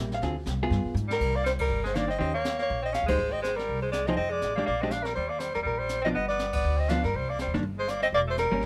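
Late-night and swinging, this short excerpt from a longer piece is small-group jazz in the swing and bop vein, moving at a brisk 243 BPM in C minor with a gentle swing feel. A dark, clean, hollow-body electric guitar comps up front from the start alongside a woody, thumpy upright bass with gut strings, plucked and sitting close to the listener. A brush drum kit enters at 0.1 seconds with a natural small-room sound, dark cymbals, a high-tuned snare and a boomy kick, and a drum fill at 1.0 seconds ushers in the horns. From 1.1 seconds a breathy soprano saxophone carries the melody with a soft, whispered subtone and an intimate, mellow tone, while a clear tenor saxophone with vibrato and scooped notes adds a second line below it. The harmony opens on a Dm7b5 to G7b9 turnaround before settling into Cm9 and moving through Eb6, Abmaj7 and G7, with band accents punctuating the phrases and a moderate club reverb framing the group.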